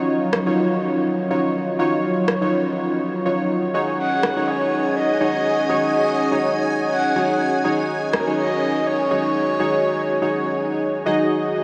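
Round, mellow analog keys with chorus and a diffuse ambient delay sit up front in this smooth, hypnotic deep house excerpt, playing stabs over a sustained, detuned pad with a filter sweep, while an overdriven electronic rim click ticks in the background from 0.3 seconds, and at 4.0 seconds a breathy, flute-like synth lead with vibrato and tape echo enters together with a shimmering, vintage string machine, all soaked in huge, dreamy reverb.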